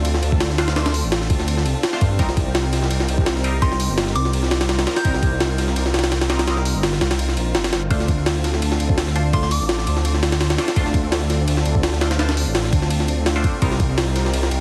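A frenetic, dark jungle and drum and bass groove runs at 168 BPM in 4/4 with a light swing on the 16ths. It is driven by an overdriven, pitched-up sampler-style drum kit with a thumpy kick, a high-tuned snare, hi-hat and ride, its kick dropping out at 7.2 seconds, over a deep, rumbling detuned saw bass up front in D phrygian. In the background a silky string machine holds mellow Dm7 and Cm7 chords, nasal band-passed chord stabs with phaser, cassette tape and dub echo enter at 0.6 seconds, and a pure FM synth bell carries a brief melody from 3.6 seconds with chorus, phaser, 12-bit sampler grit and dub echo, all within a heavily compressed radio sound with vinyl crackle and light digital reverb in this cut from a longer piece.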